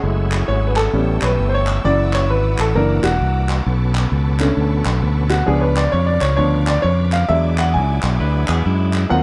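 Uptempo gospel at 132 BPM in F# minor, swung in 4/4 with a soulful, fervent feel, this short excerpt is cut from a longer piece. A clear, up-front baby grand piano carries the passage as a solo, its short-sustaining playing moving through rich harmony from F#m9 to a closing E9. Underneath, a round, dark fingered electric bass sits close and amped, while a shouting, lightly overdriven tonewheel organ holds chords in the background through a slow rotary speaker with chorus vibrato and key click. A focused studio string section adds bowed, vibrato-tinged sustained chords high above, and crisp group handclaps ring out from a distant, large-room space. Near the end, at 8.2 seconds, a bright, clean picked electric guitar slips in with a brief second line, all set in a dry, close small-room sound with a 1970s studio character.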